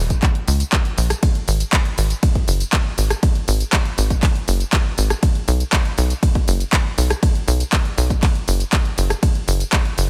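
A straight, driving pulse from a deep, overdriven electronic kick, re-recorded in a large room and set up front, anchors this emotional, bittersweet progressive house excerpt, joined by a bright-hatted house kit of handclaps, hi-hat, ride, rim click and tambourine pumping against the sidechain, while a tight, punchy sawtooth-and-square sequencer bass with a filter pluck and moving notch pulses low and close in a dry mix.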